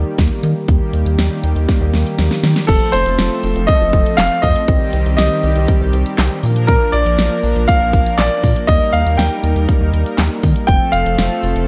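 Set in a light, digital-ambience reverb, this bright, upbeat synth-pop excerpt moves at 120 BPM in a straight 4/4 feel in F mixolydian, cycling through Eb, F, Cm and Bb. A clear, polished concert grand piano carries the melody up front with a slapback echo, over a brassy, detuned sawtooth pad that holds chorused chords and a rubbery, hollow square-wave bass with a resonant filter pluck. A punchy, layered electronic pop kit of kick, fat snare, hats, handclaps and crash enters at 0.2 seconds and plays a fill from 1.7 to 2.7 seconds that leads into the next section.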